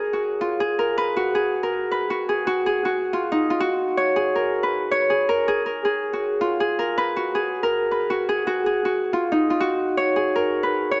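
A half-time 4/4 pulse at 160 BPM frames this dark, hard-hitting hip hop fragment, where a mellow, ringing, fingerpicked acoustic Celtic harp plays alone up front from 0.0 to 11.0 s between Eb4 and Db5, bathed in a lush hall reverb with a dulled, rounded top end.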